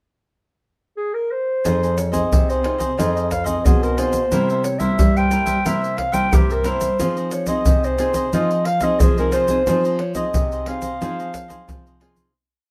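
A mellow, distant clarinet opens with a pickup at 1.0 s, carrying a motif-based, classical-style melody in period phrases through a nostalgic, yearning samba and choro in F minor at 90 BPM. At 1.6 s a bright, crisp cavaquinho strumming in sixteenths and a full-bodied, fingerpicked nylon-string guitar playing thumb bass and syncopated plucked chords enter. At 1.7 s they are joined by a second thumb-plucked nylon-string guitar with fresh strings carrying a samba bass figure, and by close, dry pandeiro, tube shaker and deep surdo struck with hard hands up front. The harmony moves between Fm7 and C7 in a moderate studio reverb, and the whole piece fades out from 9.7 s.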